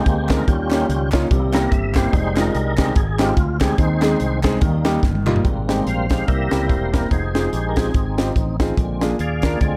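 A small room gives this brief cut from a longer uptempo gospel piece a close, lively sound, reverent and jubilant at once, swinging in 4/4 at 145 BPM in Ab major. A tonewheel organ leads throughout, its full, lightly overdriven chords turning through a slow rotary speaker with chorus vibrato as it solos across the whole passage. Beneath it, a fingered electric bass sits round and punchy, while a grand piano adds natural, warm accompaniment in the middle register. The up-front fusion kit is crisp and polished, with a high-tuned snare, punchy kick, hi-hat and toms, and it plays a drum fill at 5.0 seconds that leads into the second half. A very quiet, distant group handclap sounds from a large room until 5.4 seconds, as the harmony moves from Eb7, C7 and Fm7 toward Abmaj7 and closes on Bb7.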